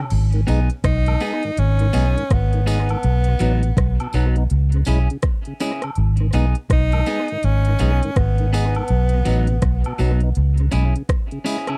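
Roots reggae at 82 BPM in 4/4, this serious, meditative excerpt from a longer piece moves with a 16th-note swing and cycles through G#m, B and C#m. An organic electronic drum kit sits up front with a deep kick, smooth hi-hat, rim clicks and crash cymbal, its tape-warmed sound re-recorded in a large room and touched with tape echo. Beneath it, a vintage muted fingered electric bass lays down a dark, round, punchy low line, while a tonewheel organ adds fat, clean accompaniment through a slow rotary speaker. An electric guitar at the edge of break-up contributes picked, compressed accompaniment with tape echo, and a distant tambourine and woodblock part fills in the background from 0.5 seconds. A clear, close-miked tenor saxophone carries the melody with vibrato and tape echo from 0.8 to 10.0 seconds, all captured in a dry, close 1970s-style studio sound.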